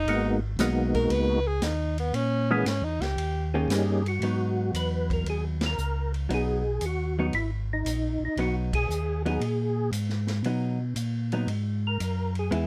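Late-night and bluesy, this soul jazz organ trio swings at 116 BPM in G# minor. A breathy tenor saxophone opens with a scooped, vibrato-laden solo line that stops at 3.5 s, over a mellow tonewheel organ bass with key click and a percussive tonewheel organ melody carrying third-harmonic percussion and chorus vibrato, both through a slow rotary speaker. A dark, compressed hollow-body jazz guitar adds picked accompaniment, while an acoustic vintage drum kit with a punchy kick and a rolled-off top sits lower in the close, dry mix, and the band hits accents at 5.5 and 8.6 seconds.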